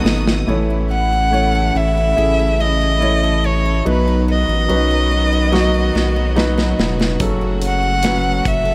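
This tender, hopeful pop ballad excerpt opens with a drum fill under a smooth, bowed solo violin carrying the melody up front with vibrato, while a soft, floating violin section holds one high note that ends at 0.5 seconds. Clear, polished baby grand piano accompaniment and a lush, focused string section sustaining chords in the background fill out the harmony at a slow 72 BPM in straight 4/4. A picked steel-string acoustic guitar plays arpeggios with tape echo, sitting back in an auditorium-like space. Underneath, a thick, saturated sine sub bass sits deep and up front with a fast attack and long sustain. The drum kit has a punchy kick, a medium-tuned snare, a rolled-off top and hi-hat. It drops out after the opening fill as the harmony moves from A to B at 3.9 seconds. It returns at 5.5 seconds with another fill that runs until the chord changes to F#m at 7.2 seconds. Light reverb and a studio ambience round out the whole.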